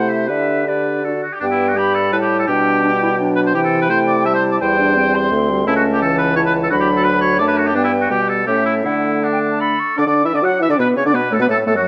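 The oboe leads the ear in this lively, spirited excerpt from a quick classical-period movement for wind quintet: its clear, up-front second line carries vibrato and a roomy tone above the ensemble. The airy concert flute sings the melody from a more distant position, tongued and with vibrato. Beneath them, a warm clarinet and a French horn with light vibrato fill in the accompaniment, while the bassoon anchors the bass. In 3/4 at roughly 156-175 BPM with a rubato feel, all five players sound together for the full 11.9 seconds. The music begins in G major and moves to D major around 5.7 s. Close, detailed microphones capture the playing inside a moderate concert hall reverb.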